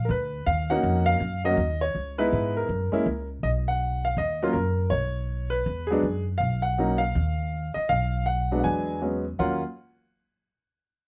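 An upright bass opens at 0.0 seconds, and a concert grand piano joins almost at once in this moody, swinging jazz piece in E-flat minor, cut from a longer performance. The tempo is a brisk 161 BPM in 4/4, with a light swing on the eighth notes. The plucked bass sounds woody and thumpy on steel strings, holding down the low register. The piano carries the melody with a clear, natural tone and a deep bass end. Both instruments sit up front in a dry, close sound with little reverb and an open-air feel, while the harmony moves from Ebm7 through chords such as Bmaj7 and E7 before settling back on E-flat minor at 9.4 seconds.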